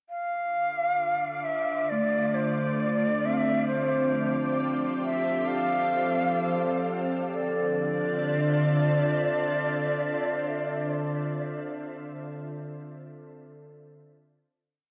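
A reedy shakuhachi opens this spacious and melancholic ambient piece in D minor at 67 BPM, sitting up front with a bamboo, end-blown tone, gentle vibrato, soft attacks and rolled-off highs as it traces arching motif-based phrases through diffuse ambient delay. From 0.8 seconds a calm, organ-like pad fades in alongside it, also up front, holding pure, bright sustained chords that shift slowly from Dm7 to F and back to Dm7, thickened by ensemble chorus and its own reverb. Also entering at 0.8 seconds, a breathy, wind-like tuned noise texture holds one high note in the background until 7.3 seconds, when the music settles onto a final chord. A mellow vibraphone played with soft mallets enters at 1.9 seconds, ringing through metallic arpeggios with slow motor vibrato, its two loops of unequal length drifting against each other in diffuse delay and sounding on after the other parts stop. The whole piece is bathed in a cathedral-like reverb and carries the worn, warbling pitch drift of old cassette tape.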